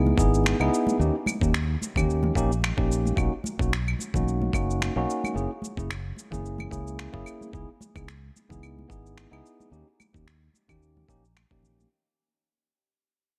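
Relaxed and smooth, this sunset chillout fragment, cut from a longer piece, moves in 4/4 with a lightly swung sixteenth-note feel and fades out across its whole length. Up front, a clean tine electric piano heard through its built-in speakers carries the accompaniment with a touch of delay, while a dark, round fretless electric bass, direct and amped, sits beside it. Soft-handed acoustic congas glow bright from a small room in the background. A compressed, sampler-style electronic kick gives a thumpy, overdriven pulse, joined by gritty, overdriven electronic cabasa, finger snaps and claves. The harmony drifts from C#m9 through D#7, Bmaj7 and F#7 before circling back, all wrapped in light reverb and digital ambience.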